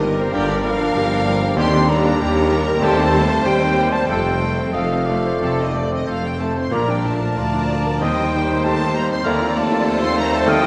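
A lush, passionate classical passage, cut from a longer piece, moves with a rubato feel at roughly 89-99 BPM in 4/4, its harmony turning from Gm7 through Ebmaj7 and F to Bb before settling on F7/Eb. A clear grand piano carries the melody from the background, intimate and natural with audible action noise and short sustain, while a symphonic violin section sings its own melodic line above with a smooth, vibrato-rich sound. A pure, straight-toned concert flute and a warm, lightly vibrato-touched oboe trace second lines alongside a very quiet second violin part, as a mellow bassoon and a rich viola section fill in the accompaniment. Low in the texture, a double bass section, a very quiet cello section and a soft-attacked tuba hold the bass, with a mellow French horn section sustaining chords beneath. From 0.3 seconds a punchy, close-miked trombone section adds quiet held chords and a distant, roomy trumpet section contributes stabs, while timpani with hard mallets are barely audible between 6.7 and 7.7 seconds. 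The whole ensemble sits in a wet scoring-stage reverb with a two-second tail, giving the orchestra a full, enveloping glow.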